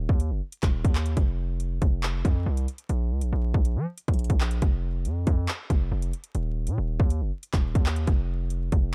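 A half-time drill pulse at 139 BPM drives this dark, tense hip hop excerpt, where an up-front electronic drum kit of hard-clipped kick, metallic hi-hats and handclaps sits over a heavy, aggressive distorted 808-style bass with a saturated sine core, noise layer and fast, decaying attack, all in a dry, dusky production flecked with vinyl crackle.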